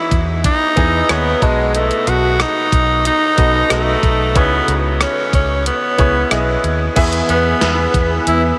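At 92 BPM in a straight 4/4, a gated 80s digital drum machine with a thumpy kick and gated reverb snare drives this romantic, glossy 1980s-style pop fragment, where a raspy, forceful tenor saxophone carries the melody up front with tape echo over bright grand piano and a dark, foam-muted fingered electric bass through Emaj7, B7 and C#m7, until at 7.0 s a chorused analog pad and mellow synth brass stabs with phaser join on an E chord, all soaked in a dreamy, huge ambient reverb.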